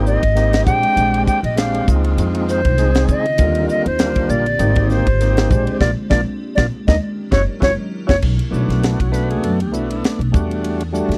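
Organ through a slow rotary speaker with light overdrive, an icy, crystalline glass pad, and a woody, growly pizzicato upright bass open this bright, slick electric jazz fusion excerpt in Eb major at 99 BPM with a swung 16th feel, as a tight funk kit with bright cymbals and a high-tuned snare enters alongside an airy, vibrato-laden flute melody that runs until 8.2 seconds, leading through a band accent and drum fill into a closing passage on Bm7 and Em11 in a dry, close 1970s-style studio sound.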